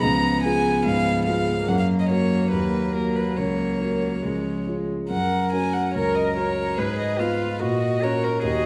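A close, intimate violin carries the melody up front in this cheerful, spirited piano quartet movement from the classical period, its sul tasto bowing airy and soft-edged with a light vibrato. The grand piano sits up front too, setting down a warm accompaniment beneath it. A single viola adds a pure, floating line of accompaniment, while the cello keeps to the background with a second line, also bowed sul tasto with a gentle vibrato. The harmony moves from C#7 through F# and D# minor to settle on C# at 4.2 seconds, and a new section from 5.1 seconds brings a diminished chord at 6.8 seconds before the phrase returns home. A wet scoring-stage reverb gives the quartet a generous sense of space in this short cut from a longer piece.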